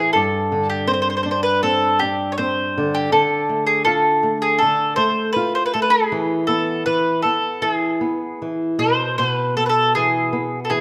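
A bright, woody mandolin carries the melody up front, its doubled strings ringing as it picks out a longing, mournful line in a fado-style ballad. Beneath it, a dark flamenco guitar fingerpicks the accompaniment, also placed close, with finger squeak audible on its strings. The pulse sits around 80 BPM in 4/4 but moves with a rubato feel, giving the phrases room to breathe. The harmony passes from Gsus4 to Dm and then to E, and both instruments play together throughout this short 10.8-second passage cut from a longer piece. A moderate recital-hall reverb surrounds the pair, lending the sound a sense of space.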